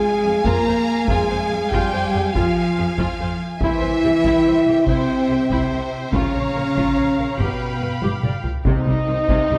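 Bathed in a wet concert-hall reverb, this heroic, dramatic cinematic cue from a longer orchestral score moves in a straight 12/8. Lush, distant violins carry the expressive melody while a close second violin line adds portamento, smooth violas fill the middle, focused cellos and double basses anchor the low end, and a mellow French horn section holds sustained chords. Beneath them a taiko ensemble pounds with heavy sticks, playing a drum fill from 8.0 s before a roomy trumpet section stabs and hard-mallet timpani strike at 8.7 s as the harmony lands on C minor.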